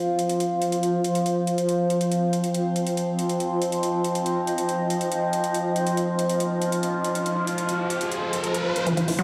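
Heard through a big sound system in a bare room with a large studio reverb, this hypnotic, driving psychedelic trance fragment opens on an up-front sawtooth drone whose resonant overtones keep moving under chorus, beneath a cloudy, evolving granular pad that stays blurred and mellow. Layered, metallic electronic hi-hats enter at 0.2 seconds, and an electronic riser comes in at 6.7 seconds. Near the cut, a punchy, detuned unison pluck riff arrives at 8.9 seconds, treated with cassette tape and digital delay, and a round, very quiet analog bass touches in at 9.0 seconds.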